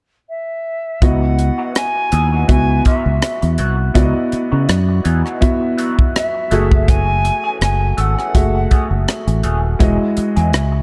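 A pure, distant silver flute with expressive vibrato and tongued notes carries the melody from 0.3 s, floating above this bittersweet, silky 1970s-style soul groove in C# minor at 82 BPM before it falls away at 9.1 s. At 1.0 s the rest of the band joins: an intimate grand piano with deep bass and audible action noise plays the accompaniment, a punchy, up-front fingered electric bass holds the low end, and a tight, dry funk kit with hi-hat, kick and rim click swings the 16ths. A dark, lo-fi, slightly broken-up electric guitar through a small old amp adds a compressed riff with wah and spring reverb over C#m11, F#m9 and Emaj9 chords, all in a warm production with light small-room ambience.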